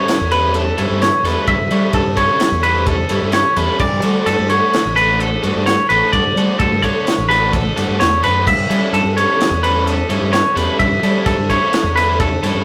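Math rock and Midwest emo in a wistful, intricate mood, this 5/4 passage at 129 BPM moves from A9 to Dmaj7 at 3.8 seconds and back to A9, cut from a longer piece. A bright, compressed, up-front clean guitar picks twangy arpeggios while a faint scooped second clean guitar adds accompaniment only until 1.5 seconds, and a double-tracked, overdriven stack guitar plays a lower riff beneath. A round, fuzz-laden fingered bass and an acoustic drum kit in a small, pumping room, with a punchy kick, high-tuned snare, and dark crash and ride cymbals, fill out the sound, captured as a rough rehearsal-room recording with a short, wet booth ambience.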